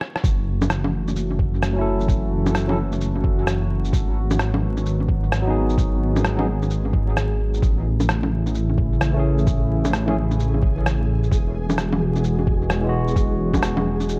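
This nocturnal, melancholic future garage excerpt opens with a drum fill on a muffled, pitched-down, tape-warm rim click, shaker and bongos, treated with studio reverb and analog delay. At 0.2 seconds a thumpy, compressed kick arrives up front alongside a deep, rumbling detuned saw bass, its beating unison tone thickened by tube saturation and pumping against the sidechain. A warbling, lo-fi pad then settles in with slow-attack sustained chords, nostalgic and gritty with 12-bit sampler character, chorus and its own reverb, moving from F#m7 through G#m7 and Amaj7 to Eadd9 in F# dorian. A bright, barky tine electric piano, clean through a combo amp, adds accompaniment that trails off into dub echo while breathing with the sidechain. The groove sits at 130 BPM in 4/4 with a 63% swing on the sixteenths. From 8.8 seconds a flickering, grainy texture holds a mellow G#4 in the background, and the whole mix is steeped in echo and vinyl crackle.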